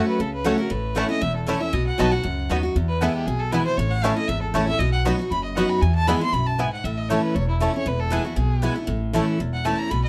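Bluegrass with a rustic, lively spirit, this brief cut from a longer piece rides a brisk straight four-beat pulse as a single bowed fiddle carries the melody from start to finish, its earthy tone graced with light vibrato and a smooth top. Up front, a picked steel-string dreadnought guitar supplies bright, full-bodied accompaniment with a fresh-string sparkle, while the pizzicato upright bass joins at 0.2 seconds with a dark, thumpy, woody gut-string pulse. A double-strung mandolin adds bright, woody picked stabs until 9.8 seconds. Set back in the mix, a fingerpicked banjo contributes a twangy, percussive second melodic line from 0.5 seconds until it drops out at 6.7 seconds, just as the opening phrase repeats. Close, detailed microphones and light reverb keep the acoustic instruments intimate and clear over changes moving through F#m, A, B and E.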